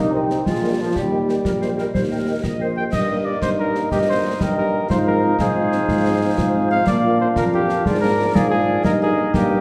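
A mellow, soft-attacked cornet carries the melody up front in this festive, spirited military-style march for wind band, set in a straight 6/8 at 122 BPM (dotted quarters) in Eb major and cut from a longer piece. Beneath it, a clear euphonium and a light-vibrato woodwind section play second lines, a loose, vintage-sounding trombone section holds sustained chords in the background, a warm tuba anchors the bass, and a very quiet, dark French horn section adds accompaniment from a distance. Concert snare drum, concert bass drum and dusky clash cymbals sound close and dry from 0.3 seconds, while the other winds sit further back in a roomy, reverberant large studio, with the harmony moving from Eb through Fm7/Ab and Bb7 before returning to Eb/G.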